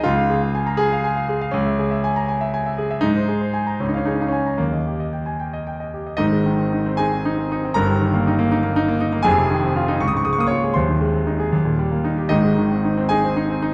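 A 6/8 pulse, counted in dotted quarters at roughly 74-82 BPM, bends freely under rubato in this heroic, sparkling classical piano study in Ab major, cut from a longer piece. A solo concert grand carries everything, reaching from Eb1 in the deep bass up to Eb6, with a clear, polished, up-front tone and short sustain. The opening passage moves through Db, Db minor, Ab, Db and Eb before a new section begins at 6.2 seconds on Ab. From there the harmony travels through Eb/G, Fm7 and Bbm7/Db, settling back through Ab/Eb and Eb to close on Ab at 12.3 seconds. A wet recital hall reverb and a dark production surround the instrument, lending the virtuoso writing a sense of grand space.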